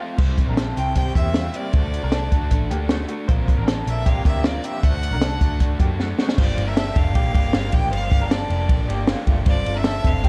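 A straight 4/4 groove at 155 BPM drives this restless, wistful snippet of jangly indie pop in G dorian, with a compact cocktail drum kit up front from 0.2 s, its high-tuned snare and punchy kick softened by a rolled-off top, beside a round, foam-muted vintage picked bass. A crunchy, overdriven picked guitar carries the accompaniment, while a second electric guitar through a small old amp plays slightly broken-up, lo-fi arpeggios colored by tremolo and digital delay. From 0.8 s a bright, distant solo violin bows an intense melody with vibrato over chords moving from C through D and Bbadd9, and after a drum fill at 6.0 s the music settles onto Gm7, all within a dark production with light reverb.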